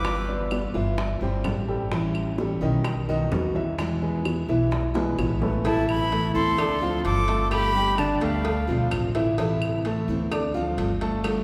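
Warm and sultry, this fragment of a longer piece sits in a straight-feel Cuban son and guajira groove, bathed in the long, wet reverb of a church. A breathy silver concert flute carries the melody with a tongued, expressive straight tone, joined by a bright trumpet with vibrato, set further back, on a second line. The two sound briefly at the start, drop out after 0.5 seconds, and return at 5.7 seconds until 8.9 seconds. Beneath them, a full-bodied picked jumbo steel-string acoustic guitar picks out the accompaniment while an up-front concert grand piano with deep bass rolls out arpeggios, and a dark, thumpy upright bass plays pizzicato on gut strings. Round, low-tuned bongos and cowbell, played with soft hands and a vintage, band-limited tone, drive the percussion, with close, dry, woody claves ticking in the background and a drum fill leading into the second half.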